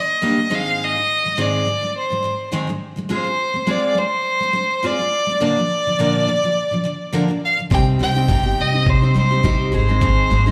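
A clear, focused bowed violin carries a heartfelt, sunny melody with vibrato and slapback echo over a full-bodied picked steel-string acoustic guitar in this 104 BPM acoustic pop excerpt with a light 16th-note swing, before a woody, dark pizzicato upright bass and a gritty, thumpy electronic kick drum join at 7.7 s, all heard as a live gig through the venue's PA with club reverb and small room ambience.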